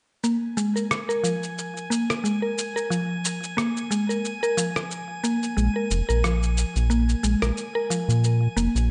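A woody, mallet-like FM synth pluck plays arpeggios over a gritty, compressed electronic cabasa and rim click from 0.2 s, at an unhurried 90 BPM with a light sixteenth-note swing. The pluck carries chorus and tape echo, and the percussion sits in studio reverb. A glassy texture of drifting overtones, bright and calm with its own chorus and reverb, fades in slowly at 0.5 s over a Bb5 harmony, and at 5.6 s a round, deep analog bass blending sawtooth and sine arrives up front, giving this hypnotic, warm organic downtempo cut from a longer piece a dark low end within a moderate scoring-stage ambience and a softened top.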